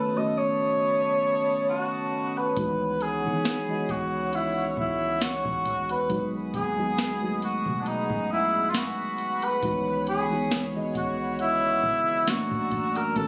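A slow, lightly swung 68 BPM groove in 4/4 arrives at 2.6 s, when a booming analog drum machine with a deep kick, tonal snare and metallic hats joins a soft, round 808-style bass sitting in the background. Before that, this sensual, longing contemporary R&B excerpt in C# minor opens on a mellow cor anglais melody with light vibrato and delay, up front over muted, felt-like synth keys with chorus that play a fill from 1.2 s, while a shimmering, retro pulse-width pad with sidechain pumping sustains chords, starting on B9 and later moving through C#m11, G#m7/B and F#7alt. The intimate sound carries light reverb and studio ambience, and it is compressed and captured on a phone in the room, with nothing above 7.8 kHz.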